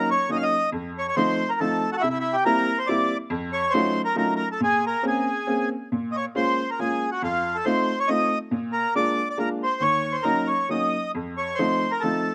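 An accordion and a bright upright piano begin together at once in this nostalgic, bittersweet musette waltz, a short fragment cut from a longer piece. The accordion carries the melody with a reedy, full, mid-forward voice, sitting up front in the mix. The upright piano accompanies it with a brilliant, woody and slightly detuned sound that feels worn and open. Both instruments carry a slapback echo. The waltz moves in 3/4 at 138 BPM in Bb minor, with a lilting swing on the eighth notes and a rubato feel. It is tuned a touch flat at A4 = 439 Hz. The melody passes through two statements of the same section, the second arriving at 5.9 seconds, over chords such as Ebm7, F7b9b13, Bbm9 and Bb7. The light reverb and the outdoor setting give the recording a sense of open air, free of any room sound.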